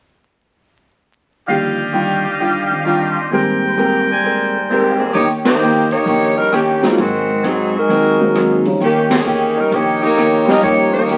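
A swung 131 BPM 4/4 groove drives this joyful, brassy big band swing excerpt in Eb major. A dark baby grand piano and a boxy, fingerpicked steel-string parlour guitar comp from 1.5 s beneath clear, vibrato-laden trumpet section stabs. A mellow saxophone section takes the up-front melody at 4.7 s, and at 5.1 s a woody pizzicato upright bass sits in the background while a swinging big-band kit of hi-hat, ride, rim click and high-tuned snare joins as the harmony turns mixolydian, with band accents, wet studio reverb and the crackle of a very old 78 rpm record.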